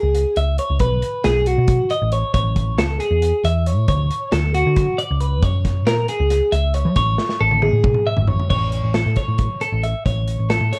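Math rock and midwest emo in 7/8 with a straight feel, this short cut from a longer piece sounds bright and playful. A twelve-string electric guitar carries the arpeggios from the start, its clean, picked tone twangy and compressed, sitting up front through seventh chords such as B7, Amaj7 and Dmaj7. Beneath it, a hollow-body short-scale electric bass gives a round, amped low end, also placed close in the mix. An acoustic drum kit with dark cymbals, a medium-tuned snare and a tight kick works across hi-hat, crash and toms, and plays a fill from 7.2 to 8.5 seconds. At 8.5 seconds the music lands on a plain A chord and moves into a new section. The production is dark and warm overall, with a light small-room reverb.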